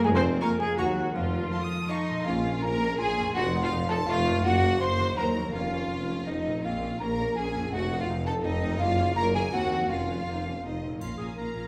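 A woody, soft-mallet xylophone carries the melody with an expressive chamber violin section in this playful, whimsical cinematic cue cut from a longer piece, moving in 3/4 at 165 BPM in Bb minor with a quirky, magical mood: a lush studio violin section, a distant silver flute and a dark clarinet entering at 2.3 s weave second lines, while a mellow French horn section holds sustained chords from 1.9 s, a ringing concert harp spins arpeggios, a background viola section adds accompaniment, smooth cello and double bass sections join a tuba on the bass, and a close, dry triangle sounds at 11.0 s, set in a wet recital-hall reverb.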